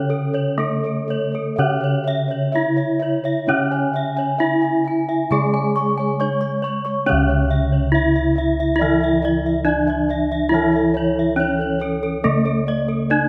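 A wet recital-hall reverb surrounds this stately, hypnotic gamelan passage in C# pelog, cut from a longer piece and moving at 60-70 BPM in a straight 4/4, with a new section arriving at 7.1 seconds. Up front, a bright bronze metallophone carries the melody with horn-mallet strikes and the shimmering beats of paired tuning, while a second metallophone supplies a lower accompaniment with a boxy, small-room color. Higher arpeggios come from a ringing third metallophone and a set of mellow, dark bossed gongs struck with padded beaters, as close-miked, dry, full bossed gongs anchor the bass.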